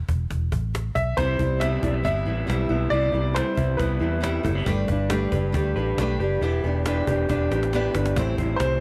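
Lightly reverberant and intimate, this short cut from a longer jangly indie pop piece moves at a youthful, nostalgic 137 BPM in 4/4, where a round, foam-muted vintage electric bass and a snappy, close cajon start at 0.1 seconds, a woody upright piano with audible action noise and slapback echo carries the melody from 1.0 to 4.4 seconds, a fingerpicked steel-string acoustic guitar with finger squeak provides accompaniment while a slightly broken-up, lo-fi electric guitar through a small old amp plays arpeggios over Cmaj7, Gadd9, Em7 and Am7, and the cajon plays a fill from 7.3 seconds.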